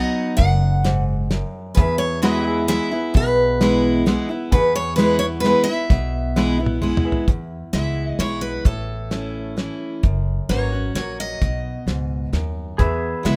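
Sunny and nostalgic, this short honky-tonk and classic country passage in E major, in 3/4 at 131 BPM, puts two picked steel-string acoustic guitars up front, a warm one carrying the melody and a bright one the accompaniment, over a woody, growly pizzicato upright bass and a dry, dark drum kit with a fat snare whose fill at 6.4 s closes the opening section, while a clean pedal steel guitar with volume swells and a brilliant grand piano in the background drop out at 7.3 s and return at 12.8 s, all in a nearly reverb-free sound.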